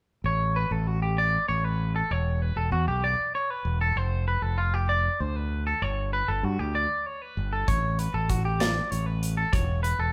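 Bright and playful, this math rock and midwest emo cut moves at 65 BPM in a straight 6/8, opening at 0.2 s with a growling, overdriven fingered electric bass underneath a twangy, clean, picked electric guitar spinning arpeggios. At 7.7 s a modern studio drum kit joins with a tight kick, medium-tuned snare and hi-hat, all three parts sitting up front in a band-in-one-room sound with light reverb.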